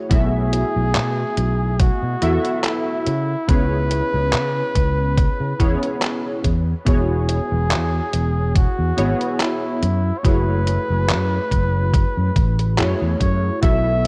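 A slow 71 BPM groove in 4/4 with a light swing on the sixteenths sets this dreamy, woozy vaporwave fragment in motion, anchored by a thumpy, up-front electronic kick and detuned 8-bit drum-machine handclaps and hi-hat bathed in studio reverb. Beneath it, a sustaining fretless electric bass sits up front with a growly, amped tone and a subtle chorus. Warbling lo-fi synth keys carry the harmony, their detuned, nostalgic sawtooth and square-wave colors thickened by a sub octave, ring modulation, a filter sweep and analog chorus, with a fast attack that decays into a mellow haze. Over this, a close-miked flugelhorn sings the melody in a jazz style, soft in attack with a light vibrato and trailed by tape echo. The chords drift from B7sus4 through C#m7 and E69 to F#m9, and the kick drops out at 13.8 seconds while the other parts run to 14.1 seconds. The whole mix has a cassette-tape character with light reverb and a digital ambience.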